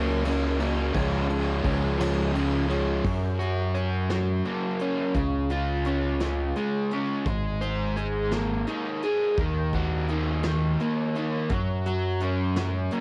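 A home cassette recording with light reverb and a hazy tape character frames this short indie rock cut from a longer piece. The mood is wistful yet upbeat, moving at 57 BPM in a straight 6/8 feel in Db major. An overdriven semi-hollow guitar, dark and double-tracked with a hollow-body ring, sits up front playing a picked riff that carries the tape's grain. Beneath it, a growling fingered electric bass with its own overdrive gives a punchy, warm low end, also placed up front. A soft brush drum kit enters at 0.2 seconds with a natural studio-room sound, a tight kick, a medium-tuned snare, hi-hat, ride and crash, sitting lower in the mix. After a brief opening passage, the music shifts at 3.0 seconds into a longer stretch that moves through Gb, Db, Abadd9 and Ebm before settling on a bare Gb5.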